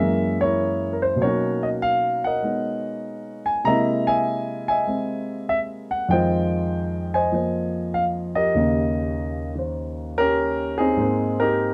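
The recording has a dark production and a light reverb that gives the room a soft glow. It is a short excerpt of solo jazz for a single concert grand piano, placed up front with a deep bass, covering a range from Eb2 up to Bb5. The mood is relaxed and warm, moving in an easy 4/4 with a gentle swing on the eighth notes. The harmony passes through rich extended and altered chords, from Gb9 and Bmaj9 through C7alt, Fm9 and Eb7 before settling on Abmaj9 at 11.0 seconds. The whole passage forms one unhurried section lasting 11.7 seconds.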